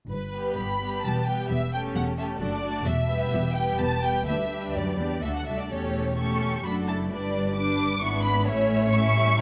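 In a quick, rubato 3/4 at 130 BPM, this cheerful, lively classical-period orchestral passage in G major, cut from a longer piece, sets a lush, up-front violin section on the melody over a dark, gliding second violin line from 0.3 s, a warm viola accompaniment from 0.4 s, and a woody cello section with soft-attacked double basses beneath, all bowed with vibrato and captured by close, detailed microphones in light reverb.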